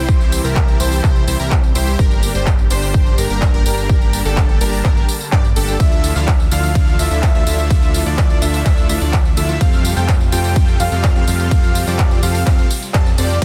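A punchy, overdriven electronic kick sits up front in this anthemic, euphoric festival progressive house drop, driving a layered big-room dance kit of crisp hats, crash, ride, handclaps and tambourine, while a barely audible downlifter slips by in the first 2.0 seconds. A huge, thick supersaw riff carries vintage 12-bit sampler grit and digital delay, a catchy plucky unison lead spins arpeggios through lush chorus and a moving notch, and a fat, evolving analog bass and a lush, slow-attack supersaw pad in the background all pump against the sidechain over chords moving from C through Gm and Dmadd9 to Fadd9. The mix is dry, dense and heavily limited, with a band accent landing at 12.9 seconds.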